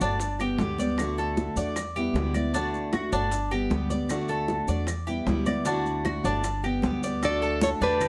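A moderate studio reverb gives this sunny, warm excerpt of Cuban son and guajira a sense of space as it moves at 154 BPM in D major over G, D and Em7 chords. Up front, a full-bodied jumbo steel-string guitar picks the accompaniment while a metallic, double-strung Cuban tres plays arpeggios, underpinned by a dark, thumpy gut-string upright bass, round low-tuned bongos, thick-skinned congas played with soft hands, grainy close maracas, and woody, saturated claves that join at 0.4 s. At 7.2 s a fingerpicked nylon-string guitar with a deep classical tone takes the melody, and a clear, punchy trumpet with scooped notes adds a second line.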